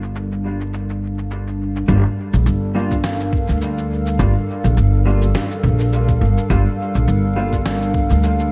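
A dark, vinyl-crackled production with light reverb wraps this hazy, deep ambient dub fragment in G minor at 104 BPM, with a gentle 16th-note swing over a Gm7 chord. A warbling, detuned, tape-like pad holds nostalgic sustained chords through chorus and its own reverb. Meanwhile, an up-front, woody upright bass plucks gut strings, and a muffled, pitched-down sampler kit of cabasa, snare and toms sits behind low-pass filtering and dub echo. At 1.9 s, a thumpy electronic kick enters in the background alongside clean, compressed electric guitar stabs soaked in lush chorus and dub echo.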